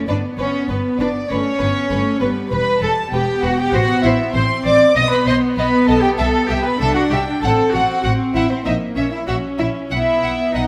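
A rich, intimate viola section with light vibrato opens this restless, stormy classical-period movement for string orchestra at 98 BPM, joined at once by a distant, floating violin melody, a second violin line with a smooth top, an up-front cello section and a close double bass section, every section bowed sul tasto with a soft attack in a moderate scoring-stage reverb as the harmony moves from G through E minor and A minor to a final B chord.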